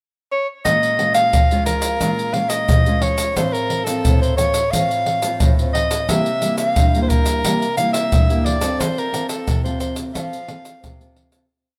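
Light reverb gives this short samba and choro piece a touch of space: it is in Bb harmonic minor at 88 BPM, with a yearning yet lively mood. A warm, smooth-topped soprano saxophone sits up front from 0.3 seconds with a jazz-style, motif-based solo melody in song-like phrases, while a nylon-string guitar with fresh strings plays classical-style thumb bass and syncopated plucked chords, and a saturated, compressed pandeiro, egg shaker and tight surdo drive the rhythm up front. The harmony moves from Bbm7 through F/A and C7 to F as the music fades out from 8.8 seconds.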